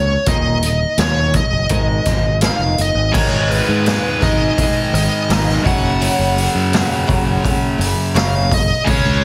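Heavily compressed with a radio-like sheen and a light small-room reverb, this angsty, brooding alternative rock excerpt opens with a biting lead guitar carrying the melody through overdrive and slapback echo, a dark, boxy old ladder-braced acoustic guitar picking arpeggios, and a growling fingered bass. A raw, gritty garage kit with a boomy kick and saturated sound enters at 0.3 seconds, and at 3.1 seconds a bright, overdriven electric guitar joins up front with a riff as the second section begins. From 8.9 seconds, a scooped high-gain guitar with distortion adds its own riff in the background.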